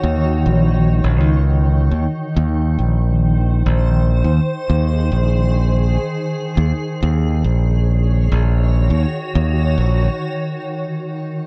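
Ambient dub at 103 BPM in Eb dorian, this short cut from a longer piece has a meditative, deep mood and a gently swung sixteenth-note feel. A granular cloud pad holds sustained chords throughout, its blurred, evolving texture rising on a slow attack and trailing off with a long release inside its own built-in reverb. Beneath it, a bright fingered electric bass sits punchy and direct at the front of the mix, moving low between Bb1 and Eb2. The harmony shifts from Ebm7 to Bb9sus4 and back to Ebm7 at 6.6 seconds. At 10.1 seconds the bass drops out for a brief break, leaving the pad alone until it ends at 11.5 seconds, all set in a light reverb.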